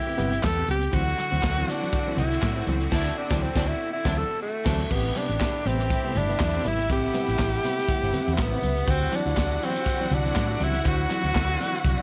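Light reverb and small-room ambience give this disco excerpt a glamorous, sultry glow, its swung sixteenth-note groove shifting between Am9 and D9. A clear, close-miked tenor saxophone sits up front with a soft attack, scooped notes and jazz-style vibrato, taking a solo from the start while the band hits an accent between 2.9 and 4.9 seconds, before a new section arrives at 4.9 seconds. Behind it, a rich, focused string section carries a second line with slapback echo, while a bright, biting, distant string section holds sustained chords. A mellow, clean electric guitar with lush chorus and a reedy, worn, slightly out-of-tune electric piano with fast tremolo fill in the background. The foundation comes from a dark, round hollow-body bass and a vintage acoustic drum kit with a punchy kick, medium-tuned snare, dark cymbals, hi-hat, crash and handclaps, all treated with gated reverb. Very quiet, thick-skinned congas and a hollow, dry group handclap add a light percussive sparkle underneath.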